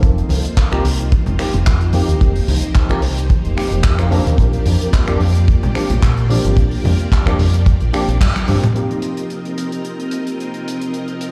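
A lightly swung 16th-note groove at 110 BPM in 4/4 drives this groovy, sunny nu-disco clip, built on a dry, up-front kick, a tight funk kit of finger snaps, handclaps, hi-hat and toms, very quiet ringing congas, and a direct, amped fingered bass through an envelope filter. A worn, slightly out-of-tune tine electric piano, lightly overdriven through a combo amp with chorus, tape echo and sidechain pumping, sits over lush sawtooth string-machine chords with a sub octave and slow attack, moving between F7sus4 and Bb6. After a drum fill and band accent at 8.2 seconds, the kick, bass and congas drop away, leaving keys, strings and kit in a large, reverberant studio space until the clip ends at 11.3 seconds.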